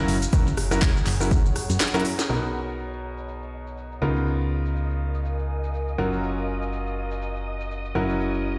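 Heard through a big sound system in a bare stone room, this euphoric, feel-good piano house cut pumps with swung rhythm as a bright, woody upright piano riff and a round, dark FM bass with tube saturation sit up front, both pumping against the beat, while a warbly, nostalgic tape-like pad with chorus drifts behind them. A gritty, sampler-style breakbeat kit and a crisp, cracking garage kit with handclaps, rim clicks and shakers drive the groove, joined briefly by a punchy, overdriven electronic kick that drops out at 1.4 seconds. After a drum fill and a band accent, the breakbeat kit stops at 2.3 seconds and a warm, expressive violin section enters in the background with a filter sweep, as the chords move from Bmaj7 through C#13 to F#maj7.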